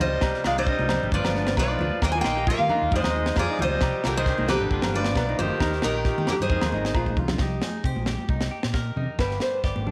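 A bittersweet, danceable highlife guitar band groove in C minor at 134 BPM opens with a bright, full-bodied steel-string acoustic guitar carrying the melody up front, shadowed by a raspy, gritty tenor saxophone second line in the background, while a twangy, clean electric guitar with phaser, a small fingerpicked nylon-string guitar with tape echo, a round, dark fingered electric bass and distant congas fill out the band. A dry, tight funk drum kit and ringing agogo bells join almost at once over a lightly swung cycle of Cm7, G7, Ebadd9 and Fm7, heard through a moderate echo chamber reverb. The melody guitar, saxophone and agogo bells stop at 7.1 seconds, and after a drum fill the nylon-string guitar takes a solo from 7.4 seconds until the cut at 9.9 seconds.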